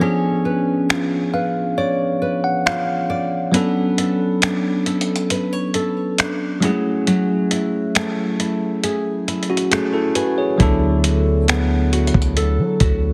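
Contemporary R&B at 68 BPM in F# minor, carrying a longing, late-night mood as a bell-like, clean tine electric piano and a fingerpicked nylon-string guitar with tape echo drift through C#7b9, Bm9, F#m9 and D6. A dusty, sampler-style kit of finger snaps, hi-hat and a thumpy kick enters at 0.9 s with a gritty, up-front character, and the electric piano adds a fill early on. At 10.6 s a deep, sine-toned 808-style bass arrives with long decaying notes, all set in a lush hall and a heavily compressed, radio-like sound.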